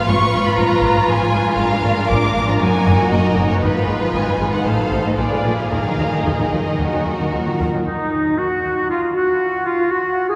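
A lush violin section carries the melody above a clear, focused second violin line, smooth violas, expressive cellos and even, distant double basses in this urgent, stormy classical passage with uneven, rubato beats, until a dark, roomy clarinet enters at 7.3 seconds, joined at 7.9 seconds by an airy flute section and an up-front oboe, in the long, wet reverb of a church or concert hall.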